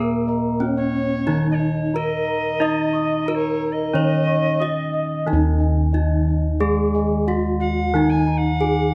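Shimmering, serene Javanese gamelan opens this cut from a longer piece: a bronze metallophone carries the melody with the shimmering beats of paired tuning over a lower metallophone accompaniment and deep bossed-gong bass, while bright higher bossed gongs and a mellow, padded metallophone add arpeggios, and from 0.8 seconds a distant alto recorder joins with a second line of airy, chiffy, vibrato-tinged wood tone, all captured close and detailed in a moderate recital-hall reverb.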